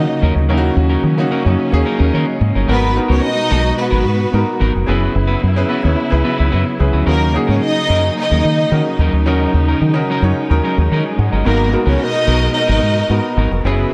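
This driving, sultry disco excerpt in G# minor at 110 BPM opens with a round, punchy fingered electric bass up front, a lush bowed violin section with vibrato carrying a second line, a woody, darker string section holding sustained chords, and an intimate grand piano whose audible action noise and tube saturation color its accompaniment. A clean, picked electric guitar with spring reverb joins at 0.1 s, as the harmony moves from D#m7 through G#m9 and F#7sus4 before returning to D#m7 and G#m9. The sound sits in light reverb, and the passage is cut from a longer piece.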